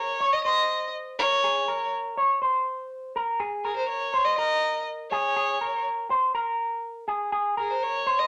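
A rich, bowed violin with vibrato carries a wistful, bittersweet indie pop melody up front, while a bright, twangy electric guitar through an envelope filter picks clean, compressed arpeggios beside it over a rootless Abadd9 chord in a wet studio reverb, both parts playing throughout this 8.3-second cut from a longer piece.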